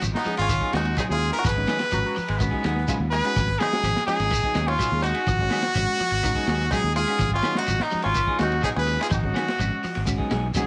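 A straight afrobeat groove from a crunchy, gritty breakbeat kit with dark cymbals, grainy shekere, faint woody claves and a round fingered electric bass drives this intense, defiant excerpt over a single G#m7 chord, as a brilliant, forceful trumpet leads up front with light vibrato, a twangy fingerpicked bluegrass banjo adds a second line, a clear, roomy baritone saxophone briefly joins from 1.9 to 3.0 seconds, and a reedy phased electric piano, a hollow-bodied clean guitar playing stabs and a faint, slightly broken-up guitar picking arpeggios fill out the background in a small room.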